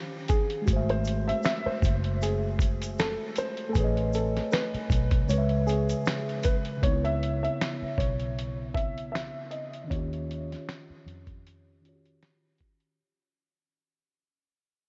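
Lo-fi hip hop excerpt in C# minor at 78 BPM, with a lazy 16th-note swing and a hazy, reflective mood. A dark, worn upright piano carries the melody, woody and slightly detuned with audible action noise and a boxy, short sustain, filtered and trailed by analog delay. Beneath it a mellow tine electric piano, heard as if through built-in speakers, lays down lush chords such as D#13, G#7b9b13, Amaj9#11 and C#m7. An up-front sampler-style kit with a thumpy kick and compressed, muffled hits enters at 0.3 seconds, joined by a grainy tube shaker sitting in the background until 6.6 seconds, while a round, punchy foam-muted electric bass enters at 0.7 seconds. From 6.8 seconds a filter sweep and fade-out blur the second section, all wrapped in light reverb and the dull, cassette-tape haze.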